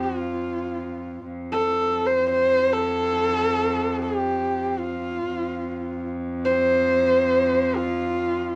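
A husky, focused horsehead fiddle carries the melody up front, its bowed horsehair strings shaded with vibrato and sliding portamento, while a reedy cello with a gut-string, period-style tone holds a low drone beneath it with light vibrato. This short Mongolian folk excerpt unfolds in free time with a proud, vast mood, both instruments sounding throughout its 8.6 seconds. The home cassette recording wraps the pair in a wet small-room reverb.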